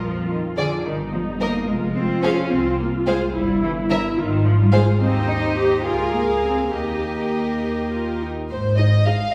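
Dark, woody violas with a smooth top, soft-attacked cellos and distant yet up-front double basses open this lively, graceful classical-period movement for string orchestra in 6/8, cut from a longer piece, before two violin sections enter at 0.6 seconds: a pure, floating, quieter melody and an intimate second line with light vibrato, all bowed sul tasto and heard from further back in a wet concert hall.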